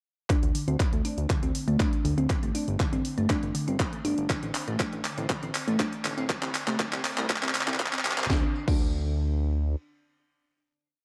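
Progressive house with a bittersweet, driving mood, built as one long build-up from 0.3 seconds to 8.3 seconds over a punchy four-on-the-floor electronic kick, a house kit of closed and open hats, claps, a cracking snare, crash and a drum fill, and a fat, detuned sawtooth bass galloping in sixteenth notes with sidechain pumping. A glassy, crystalline wavetable pluck arpeggiates a 6-step loop that drifts against the bar, dressed in chorus, delay and pumping as a filter sweep carries it through the build. The kick and pluck stop at 8.8 seconds and the bass at 9.8 seconds, leaving a final chord to ring out in a lush hall reverb within a dark production.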